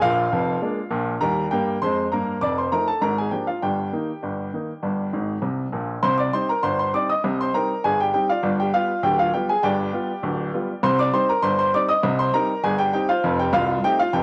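A clear, up-front grand piano carries this jaunty, lively ragtime excerpt alone at 100 BPM in a straight 2/4, ranging from deep C1 to Eb6 through chords moving from Bb7 and Eb to Cm, G7 and F7, with a brief fill at 5.1 seconds before the strain repeats at 6.0 seconds, all bathed in moderate spring reverb and the dulled top end of a cassette home recording.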